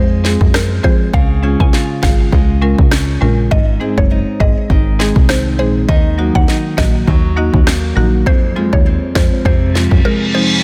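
Dancehall at 101 BPM with a swung sixteenth feel, this tough, hypnotic clip moves through F minor, Db, Ab and Eb minor over a dense, heavily limited, dry mix. An up-front electronic afro-pop kit with deep kick, sharp snare and rim click drives beneath a punchy, funky analog bass, while woody close-miked marimba and fingerpicked nylon-string guitar arpeggios with delay join a round, mellow FM synth pluck melody colored by chorus, phaser and delay. A reverse cymbal rises in at 9.7 seconds as the drums and bass drop out at 10.0 seconds, leaving a brief gap before the cut.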